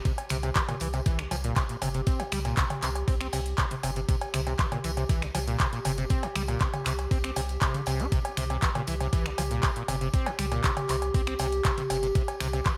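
A straight 4/4 groove drives this playful, trippy acid house cut, built on a thumpy, up-front electronic kick and a booming analog drum machine with metallic hats, cowbell, finger snaps, handclaps and toms, while a very quiet, dusty sampler-style kit adds hi-hat, ride and snare and a jingly tambourine sits in the background. A squelchy, resonant overdriven acid bass riff with filter sweep and tape echo rides over a deep, thick triangle sub bass, both pumping with sidechain, as does a warbling, nostalgic lo-fi pad holding dark sustained chords. The parts run through the whole cut, set in light reverb and digital ambience.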